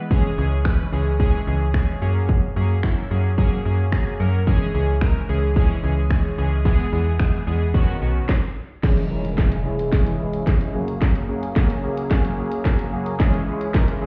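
Airy, detuned analog keys with a warbling chorus open this energetic, confident dance-pop excerpt, joined by a punchy house drum kit with cracking snare, hi-hat and finger snaps and a snappy, metallic FM slap bass until a brief stop at 8.3 seconds, after which an evolving filtered supersaw swell and a background electronic impact carry a build-up with a drum fill and filter sweep, the mix sounding muffled as if through a wall inside a stone-room reverb.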